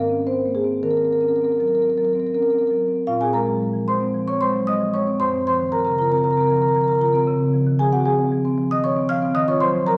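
A wet recital-hall reverb with a 1.6-second decay surrounds this short excerpt of a contemporary classical piece for solo marimba. The marimba, played with medium mallets on rosewood bars, sits up front with a woody, warm tone and spans a broad compass from Gb2 to F6 across its full 10 seconds. The mood is flowing and hypnotic, with a rubato feel in 4/4 that moves between roughly 104 and 119 BPM in Bb minor, tuned to A4 = 438 Hz. The harmony drifts from Abadd9 and Ebm6 into a restatement of the opening material at 3.1 seconds, passing through Bbm9, Gbmaj7#11 and Dbmaj7 before settling on Ebm9.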